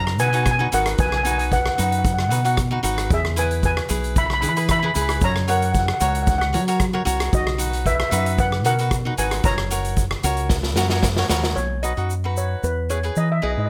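A straight 4/4 calypso groove at 114 BPM in B major sets a festive, sunny mood in this short cut from a longer piece, with a shimmering, metallic lead steel pan carrying the melody up front over a dark, round, punchy fingered electric bass. A crisp picked cavaquinho supplies the accompaniment, a polished street-band drum kit with a boomy kick, medium-tuned snare, rim clicks and hi-hat drives the beat from a big, airy room, and a grainy tube shaker sits in the background. The drums play a fill from 10.5 seconds and stop at 11.6 seconds, leaving the pan, bass, cavaquinho and shaker to carry the closing passage under light reverb.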